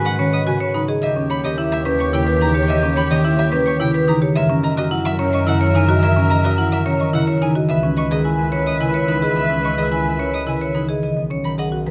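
A metallic vibraphone, struck with hard mallets and shimmering with fast motor vibrato, carries the melody in this propulsive, bright excerpt of minimalist classical pattern music in 3/4. A woody marimba and a close, smooth solo violin spin arpeggios, while a distant oboe adds a second line, a mellow fingerpicked harp provides accompaniment and a clear, focused double bass section anchors the bass. Lush bowed strings hold sustained chords in the background, everything sits in a moderate recital hall reverb, and the oboe and strings drop out at 10.8 seconds as the harmony moves from G#m7 toward B69.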